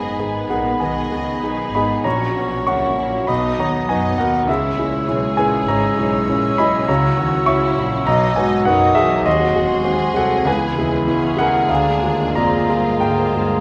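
A rubato 4/4 pulse around 98 BPM carries this tragic, passionate romantic movement for piano and orchestra in G# minor, heard as a 13.6-second passage cut from a longer piece. Up front, the concert grand leads the melody with deep bass, long sustain and audible action noise, while a violin section also carries the tune in the background; a second violin line joins an airy, close-miked silver flute and a mellow clarinet on supporting lines. Very quiet violas and French horns supply accompaniment and sustained chords, lush bowed cellos and double basses hold the bass, and a moderate recital hall reverb surrounds the sound.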